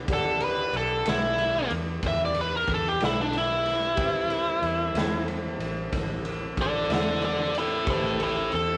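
A biting, overdriven lead guitar sits up front and carries the melody through this mournful, brooding slow blues in 12/8 at 62 BPM, moving from Em7 to Am7 over a raw garage drum kit with punchy kick, dark cymbals and a rolled-off top, a round, foam-muted fingered bass, and very quiet layers of clean rotary-speaker tonewheel organ, mellow long-sustaining grand piano, and a slightly broken-up lo-fi accompanying guitar through a small old amp that plays from 1.1 to 7.1 seconds, all caught in a rough rehearsal-room recording with tube saturation and light reverb.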